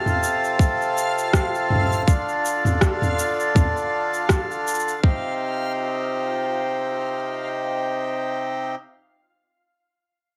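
Autumnal and wistful, this short folktronica excerpt sets reedy, airy accordion chords up front against a dreamy, reversed swelling texture that glows brightly in the background until 5.0 s. A tight, overdriven electronic kick and an organic electronic kit of rim click, shaker and toms sit close and gritty, re-recorded in a large room, with a swung sixteenth-note feel. The harmony moves from F/C to Dm before settling on Cm, and from 5.2 s the accordion carries on alone to 8.8 s.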